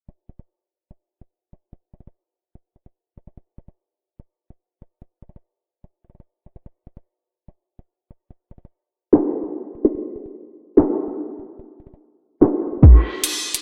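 Ominous and menacing, this short fragment of a longer hip hop piece moves with a half-time feel in 4/4. A drill drum kit carries the whole clip from 0.1 to 13.6 seconds, its electronic, produced sound placed up front, with kick, snare, hi-hat, handclaps and crash cymbal. The hard-clipped kick hits with grit, the snare has a woody knock, and the hats sound warm. A break runs from the start to 6.7 seconds, and a filter sweep shapes the sound until 13.2 seconds. The dreamy mix is soaked in a lush hall reverb with digital ambience, and a low-pass filter darkens the sound.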